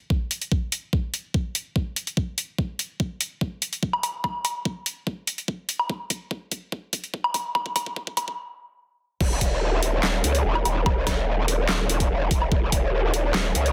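A half-time groove at 145 BPM in 4/4 drives this aggressive, menacing slice of heavy wobble dubstep, cut from a longer piece and tuned slightly low at A4 = 438 Hz. An overdriven, knocking electronic kick and a layered dubstep kit of deep snare, bright hats, handclaps, woodblock and crash cymbal sit up front through a build-up that carries a long drum fill before a brief stop at 8.4 seconds. At 9.2 seconds the drop arrives as the growl bass enters, a saturated, wobbling sine tone shaped by a formant filter, with a fast attack, chorus and a bright, compressed edge ranging from Eb1 to Db2. Studio reverb adds space to both drum parts, with the hats, cymbals, snare and percussion thinned by high-pass filtering. The whole sits in light reverb under a dense, heavily limited modern master.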